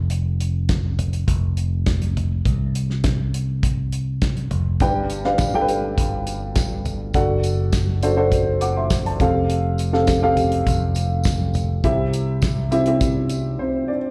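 A dark, woody upright piano with audible action noise, a slightly detuned, boxy tone and a slapback echo enters at 4.8 seconds, carrying this uplifting, anthemic piano-driven pop excerpt through G, D/F#, Fadd9 and C. Beneath it, a growly picked electric bass and a damped 70s drum kit with a fat snare and tight kick play from the start, while a jingly tambourine sits in the background. The whole thing sounds like a live gig heard through the venue's PA, with club reverb and small room ambience.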